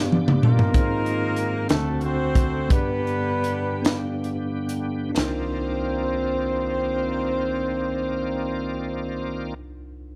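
A drum fill opens this slow gospel passage in 6/8, its straight feel moving at roughly 41-65 BPM in dotted quarters, and the tempo slows down from 0.7 to 5.2 seconds. The crisp fusion kit sits up front with a high-tuned snare, punchy kick, hi-hat, ride and toms in a small, pumping room, and it drops out at 5.4 seconds. Over it, a warm horn section carries the melody in C minor, loose and jazz-styled with light vibrato, octave doubling and a smooth top. A bell-like tine electric piano, clean and direct, accompanies up front, while a tonewheel organ holds full, shouting chords, lightly overdriven with key click, chorus vibrato and a slow rotary speaker. The harmony moves from G through Ab6 and D7 back to G before settling on Cm11 at 5.2 seconds, and studio ambience surrounds this fervent, soulful fragment of a longer piece.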